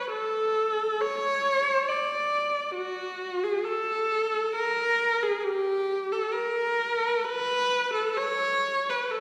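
Mournful and yearning, this brief classical excerpt features a single unaccompanied viola in a free, rubato 3/4 at around 67 BPM, tuned to A4 = 441 Hz. The bowed viola sits close and up front across its 9.2 seconds, moving between F#4 and D5 with a warm tone, soft attacks, vibrato and expressive portamento slides. A wet recital-hall reverb with a 1.8-second decay surrounds the player, giving the sound the resonant air of a church or concert hall.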